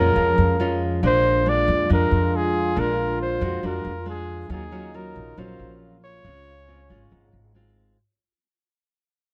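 Close, detailed microphones and little reverb give this breezy, sophisticated bossa nova fragment at 138 BPM a direct presence, and it fades out across its full eight seconds. A clear flugelhorn carries the melody up front with vibrato and scooped notes, while a breathy, whispered trombone traces a second line in the background, fingerpicked nylon-string guitar supplies the accompaniment and a woody, thumpy pizzicato upright bass holds the low end. From 1.0 s a very quiet, mellow French horn section adds tight sustained chords as the harmony moves from Bbm7 through Bb7b13 and Ebm9 to Dbmaj7.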